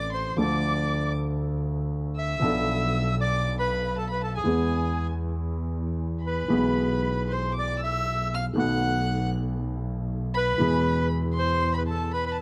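Sultry and melancholic, this rubato tango at 118 BPM sets a reedy, up-front bandoneon melody over a warm grand piano's deep, vintage-tinged accompaniment and a bowed double bass with a focused, smooth-topped vibrato, while a single bowed violin adds an expressive high second line full of soft-attacked portamento, all captured by close, detailed microphones in light reverb as the harmony moves through Dm, Bm7b5, E and B7 in this brief fragment cut from a longer piece.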